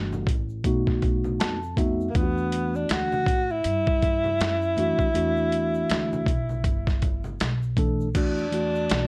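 A swung 80 BPM boom bap groove in 4/4 drives this cool, smoky jazz-hop excerpt in E minor, where gritty, pitched-down sampler drums with a thumpy kick sit up front over woody pizzicato upright bass, very quiet ringing congas and tube shaker, and a clean tine electric piano that plays a fill at 1.0 seconds before a mellow tenor saxophone enters at 2.1 seconds with subtone, vibrato and scooped notes, the whole mix bathed in light reverb and the warbling pitch drift of worn cassette tape.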